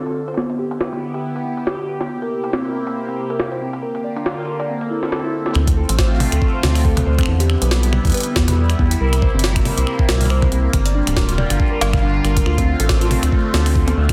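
A swung 4/4 groove at 139 BPM drives this melancholic, cerebral IDM clip in D minor, cut from a longer piece. From the first moments a jungle sampler-style kit of finger snaps, hi-hat, toms and a high-tuned, gritty snare plays pitched up and compressed, its sound re-recorded in a large room, with low-pass filtering dulling the snare, hats, toms and room, digital delay trailing behind, and soft clipping on the snare. Beneath it a swirling, detuned analog pad holds sustained chords through phaser and chorus, undergoing a filter sweep over the opening 5.6 seconds, while a mellow, harp-like synth pluck rings out arpeggios coloured by chorus, cassette tape and digital delay. At 5.6 seconds the music moves into a new section as a rubbery, hollow square bass arrives up front with tube saturation, joined a moment later by a thumpy, sampler-style electronic kick. The harmony cycles through Em7, C7, Gm7, C13 and Dm7, all set in light digital ambience and a dense, heavily limited modern master.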